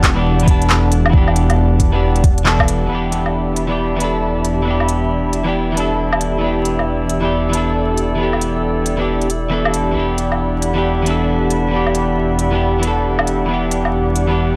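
A clean, picked twelve-string electric guitar accompanies this rainy, nocturnal future garage piece, its compressed part pumping with sidechain and trailing analog delay over a single Em7 harmony. An airy, breathy pad with chorus and a deep, rumbling detuned saw bass pump beneath it, while an overdriven, swung electronic drum kit of crisp hats, handclaps and woodblock sits up front, joined by a soft, overdriven kick only until 2.7 s, with a band accent at 2.5 s. From 4.3 s a glassy texture of drifting overtones hovers in the background, and the dry, gritty recording carries transformer saturation and vinyl crackle.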